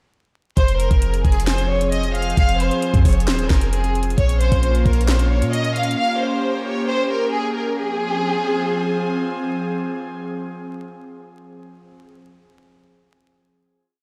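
Eerie and menacing, this short half-time trap piece in F minor at 133 BPM sets a looping, vibrato-laden symphonic violin section with tape echo over an airy, breathy chorused pad, while a knocking kick, sharp snare and metallic sixteenth-note hats with fast rolls run beside a boomy, sliding 808 bass until drums and bass stop at 6.0 s, the strings end at 9.1 s, and the pad holds the closing F minor chord to 11.7 s in a dreamy, reverb-soaked mix flecked with vinyl crackle.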